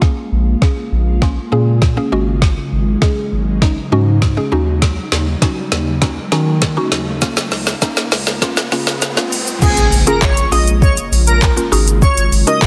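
Opening at once with an up-front, electronic R&B-style drum kit of soft kick, woody snare with soft clipping, metallic hats, handclaps, shaker and crash, alongside a percussive, mellow FM synth pluck treated with chorus and phaser and an ethereal, detuned pad, this confident, energetic dance-pop excerpt in Bb minor at 100 BPM brings in a round, deep analog bass at 0.3 s and a background riser from 2.8 s that builds over a filter sweep toward a drop at 9.6 s, where an impact lands and an airy, dreamy lead with vibrato takes the melody, the pluck, pad, bass and lead all sidechain-pumped within a dense, heavily limited modern mix.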